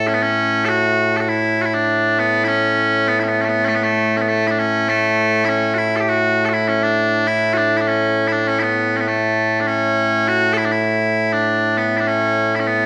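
A lone set of bagpipes opens the recording, loud and up front, and carries this short ceremonial Scottish traditional extract from start to finish at 12.9 seconds. The tune moves at a steady, straight 100 BPM in 4/4 and sits in A major, spanning A2 to A4. The piping is continuous and bright, with a piercing edge that gives the music its stirring character. A recital hall reverb with a 1.7-second decay surrounds the pipes, lending the performance a sense of space and occasion. The production itself leans dark and warm, which softens the overall sound around the keen tone of the solo instrument. Taken from a longer piece, the passage feels like a moment lifted from a formal procession or gathering.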